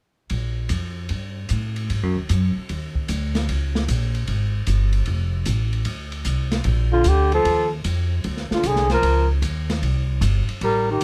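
A relaxed, swinging small-group swing and bop groove at 151 BPM in Bb major starts at 0.3 seconds, with a woody, pizzicato upright bass up front and a smooth acoustic jazz kit of hi-hat, kick, ride and snare in a small room, with a punchy kick and dark cymbals. At 6.9 seconds a flugelhorn with vibrato and a smooth top takes the melody up front, while a distant, roomy baritone saxophone with vibrato carries a second line beneath it. Close, detailed microphones and little reverb give this section of a longer piece an intimate, present sound.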